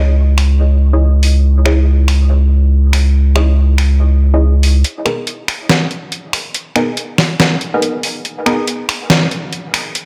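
Deep dubstep in G# minor at 141 BPM, this brooding, heavy excerpt moves in a swung, half-time 4/4 feel and is cut from a longer piece. A muted, detuned sawtooth-and-square chord stab with a sub octave and a filter pluck carries the harmony from the start, its mellow, evolving tone colored by phaser and dub echo as it outlines C#madd9 and then G#madd9 at 4.8 seconds. Underneath, a thick, saturated triangle sub bass sits up front on a sustained C#2 until it stops at 4.8 seconds. A gritty, pitched-down trip hop sampler-style kit of finger snaps, hi-hat and a medium-tuned snare enters at 0.4 seconds, compressed and tape-warm, and stays prominent through the build-up from 4.8 seconds onward. The mix sits in a light reverb with a digital ambience, and the tuning sits slightly flat.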